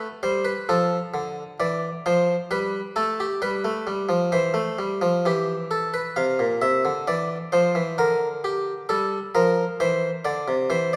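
In a straight 4/4 pulse, this lively, elegant baroque-style two-part invention is carried by a solo harpsichord in the Italian style, its single set of strings sounding bright, airy and plucked as it sits up front. The harmony moves from Dm7 through G7 and C/E to F5 and Gm7/D before settling on C at 9.8 seconds, the instrument ranging from Bb2 to F5. A moderate concert hall reverb lends the short passage, cut from a longer piece, a graceful sense of space.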